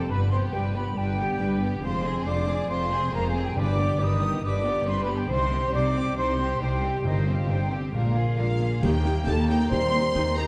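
This is a heroic, triumphant cinematic adventure film score excerpt in C minor, moving at 138 BPM in a straight 4/4. A lush, distant violin section carries the melody over a bright, pure flute group and a second violin line, while violas with soft attacks and portamento and a very quiet mellow French horn section hold up the harmony. A ringing concert harp plays arpeggios, and a tight trumpet section adds stabs until 8.6 s. Cellos and woody double basses anchor the bass, and timpani join at 3.6 s as the chords move through G, Fm, Cm and Bb7. At 8.8 s the music lands on Eb, where a dark clarinet, a roomy oboe, a punchy tuba and very quiet clash cymbals, bass drum and snare drum enter. The whole ensemble sits in a wet scoring-stage reverb.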